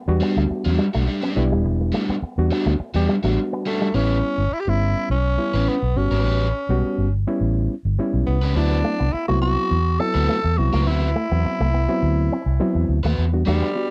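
A breathy, raspy tenor saxophone takes the lead up front from 3.7 seconds, its scooped notes and smooth top giving this sly, driving funk excerpt its pop-styled voice. Underneath, a dark, foam-muted electric bass sits round and up front, anchoring the groove across the whole passage. A gritty, reedy electric piano played through a combo amp plays stabs, while a crunchy overdriven guitar, picked, fills in the accompaniment. In the background, a clean, compressed guitar with an envelope filter and a touch of spring reverb plays a fingered riff, dropping out at 3.9 seconds and returning at 8.7 seconds. The harmony moves from Em9 to A9 and D13 before landing back on Em9, all captured in a dry, close 1970s-style studio sound.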